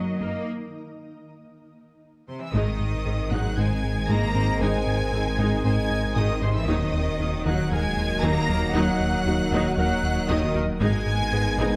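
A wet scoring-stage reverb wraps this tense, brooding excerpt of a hybrid orchestral and electronic film cue, moving at 116 BPM in a straight 4/4. From the opening, rich violas and mellow, distant French horns sit in the background alongside a very quiet, shimmering ambient pad and a warbly, dusty lo-fi pluck tracing dark arpeggios, while bright, intense cellos and clear, very quiet double basses hold the low end. A break runs from 0.5 to 2.5 seconds, and at 2.3 seconds the violins arrive in two lush, vibrato-rich lines, the higher carrying the melody and the lower a focused second part. By 2.5 seconds, background trombones add sustained chords, a round, evolving analog bass with a ring-modulated edge takes up a riff as the loudest voice, and a deep sine sub bass with an octave anchors the floor. The harmony moves from Ebm/Gb through Ab and Ebm before settling on Abm, keeping the mood shadowed and unresolved.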